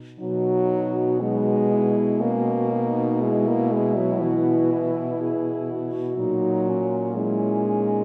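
Heard from further back in a reverberant concert hall, this short passage cut from a longer piece is a serene, tender classical work for horn quartet in B major, moving at a rubato 60 BPM in 3/4. All four French horns sound together from 0.2 to 8.0 seconds: a mellow, vintage-tinged horn with light vibrato carries the melody in the background, a warm, distant second horn plays a second line, a third horn sits up front with the accompaniment, and a clear, close-miked bass horn with vibrato and a soft attack anchors the bottom. The harmony moves gently from B to Eadd9/B at 3.2 seconds and settles on F#/A# at 6.2 seconds.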